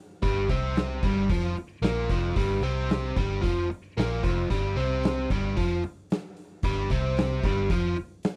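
A biting, overdriven, double-tracked guitar riff sits up front from 0.2 s in this brooding, smoky blues rock power trio and southern rock excerpt in G minor at 112 BPM, backed by a round, foam-muted fingered electric bass and an oversized, low-tuned acoustic drum kit whose gritty, saturated sound with a punchy kick and a medium-tuned snare carries a bright stone-room character, all captured as a dry, close 1970s-style studio recording.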